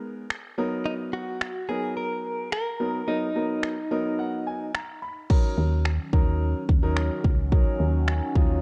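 A clear, up-front concert grand piano pumps through this energetic yet bittersweet dance-pop excerpt in Eb minor at 108 BPM, joined by a punchy pop drum kit with gritty 12-bit crash, snaps and kick, a clean direct-recorded electric guitar melody with tremolo until 4.7 seconds, and from 5.3 seconds a sweeping, resonant pad with chorus and phaser, joined at 5.6 seconds by a round, dark FM bass, all coloured by light digital reverb and warbling cassette-tape drift.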